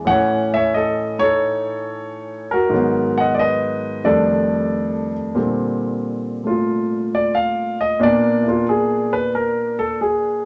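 Sophisticated and relaxed, this short solo jazz piece, cut from a longer performance, unfolds in an easy swung 4/4. A grand piano carries everything alone, its tone warm, intimate and natural, placed up front with the clatter of its action audible beneath the notes. The opening passage moves through A, G#m7 and F13, a drifting harmonic path that gives way at 5.4 seconds to a new section resting on Bb69 and then Bb. The playing spans from F2 up to F#5. A small, reverberant room surrounds the instrument, adding a close, lounge-like glow to this fragment.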